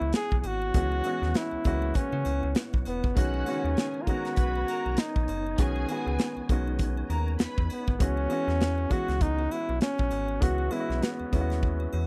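This is a short excerpt of lush, romantic 1970s-style soul at 99 BPM in 4/4, with a gentle sixteenth-note swing. It opens on an F#7sus4 chord, with a jazz-style flugelhorn carrying the melody up front, its tone warm with light vibrato and scooped notes. Beneath it, a polished grand piano with short sustain plays the accompaniment, and a very quiet tonewheel organ holds dark, round chords through a fast rotary speaker with chorus vibrato and third-harmonic percussion. A metallic FM bass with a fast, decaying attack sits up front alongside an airy acoustic drum kit with a punchy kick and a medium-tuned snare, while a shimmering triangle glints in the background. From 3.2 to 7.8 seconds, a muted, veiled string section adds a bowed second line with vibrato and a smooth top, and a drum fill at 11.6 seconds closes the passage in a dry, close studio sound.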